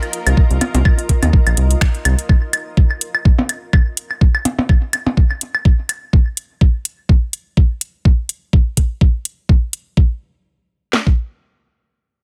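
Set in a digital ambience, this cool, sparse minimal techno excerpt at 125 BPM in 4/4 with a light 16th-note swing pairs a knocking kick and cracking snare up front with tape-warm finger snaps and metallic hi-hats, while delayed claves and percussion blips play until 6.0 s, and a cloudy granular pad and a dark, rubbery square bass with tube saturation both pump to the sidechain before dropping out by 2.3 s.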